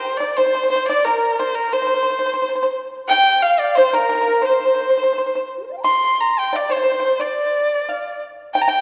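Graceful and tender, this short cut from a longer piece of Chinese traditional chamber music puts a rich, biting bowed erhu up front with the melody, colored by portamento and light vibrato, while a percussive, dry pipa played with fingerpicks sits close beside it and a large bamboo dizi with a buzzing membrane and soft attack carries a pure, expressive second line in the background, all within a lingering concert hall reverb.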